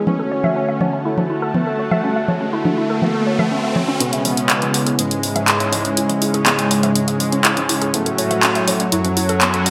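A bright, 1980s-style digital sheen and a moderate plate reverb frame this dark, melancholic melodic techno fragment, where a punchy, up-front analog drum machine taps out congas, handclaps and hi-hat under a smooth soft supersaw melody, a woody, wave-folded pluck runs filter-swept arpeggios with delay, a bold brassy pad fires chorused stabs, a full-bodied resonant pad holds sustained chords in the background, a very quiet, tense bowed-like drone ends at 4.1 seconds, and an electronic riser from 1.8 seconds leads into a build-up starting at 4.0 seconds.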